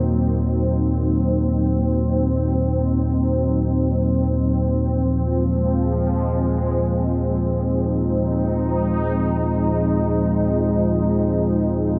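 A bright, resonant pad sits up front and carries the piece, its detuned sawtooth and sine layers evolving through a filter swell and coated in chorus as it holds sustained chords from 0.0 to 12.0 seconds. Beneath it, a deep, rumbling drone of triangle and sawtooth tones holds the low end, dark and ominous, with slow attacks, long releases and its own built-in reverb. Both parts are placed close, yet a huge, wet ambient reverb with a 7.3-second decay surrounds them and turns the space cavernous. The harmony moves only once, shifting to a new chord at 4.8 seconds. The result is a slow, unsettling stretch of dark ambient drone, heard as a fragment cut from a longer piece.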